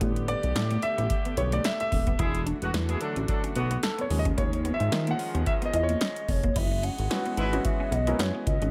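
A warm concert grand piano with audible action noise plays a solo over glossy, saturated synth bass, a dry electro analog drum machine with a deep kick and punchy snare, a clean semi-hollow electric guitar riff and reedy, bowed studio strings in the background, setting up a late-night, slick early-eighties boogie funk groove at 110 BPM with swung sixteenths, as a distant, mellow horn section adds a second line at 2.2 seconds and a hollow, woody clarinet-like synth lead with vibrato takes the melody from 5.7 seconds, all in light reverb.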